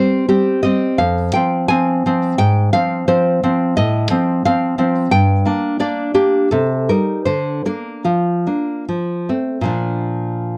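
A dry, close recording with light reverb and a 1970s studio character places a lone nylon-string guitar up front, its old strings giving the tone a woody, slightly worn edge. This romantic solo classical piece feels passionate and wistful, unfolding in a flexible rubato over a 2/4 pulse. The fingerpicked guitar covers a range from F2 up to Ab5, moving through a shadowed opening on Cm and Fm before the harmony brightens around 3.8 seconds with F/A and Gm. The phrase then passes through Cm, Bb/D, Bb/F and F, reaching a settled Bb at 9.7 seconds. Cut from a longer work, the fragment closes at 10.6 seconds, leaving the impression of a melody still in mid-thought.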